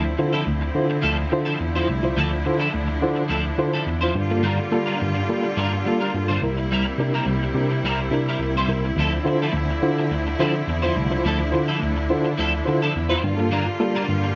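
A worn, lightly overdriven tine electric piano plays the bass line up front from the first second of this danceable, glamorous disco excerpt in D minor at 106 BPM. Alongside it, a reedy electric piano with fast tremolo sounds slightly out of tune through built-in speakers, a picked, compressed guitar on the edge of break-up shimmers with ensemble chorus, and a distant, biting string section holds lush bowed chords with vibrato. The harmony moves through Dm9, Gm7 and C7 in a light digital ambience, with the top end rolled off.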